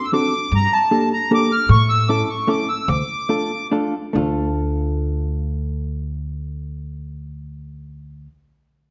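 A lilting three-beat pulse sways with a rubato looseness in this whirling, nostalgic musette waltz, cut from a longer piece, and it eases into a slowing passage between 1.7 and 4.2 seconds. The reedy accordion carries the melody up front, its sweet, airy voice shimmering with a light tremolo tuning before it falls silent at 3.7 seconds. Beneath it, a hollow-body electric jazz guitar supplies the accompaniment, its clean, fingered tone dark and compressed. An upright bass, plucked pizzicato on steel strings, adds a woody acoustic foundation, and all three parts sit close to the listener. A moderate recital-hall reverb gives the trio a sense of space, while a faint mains hum lingers in the background.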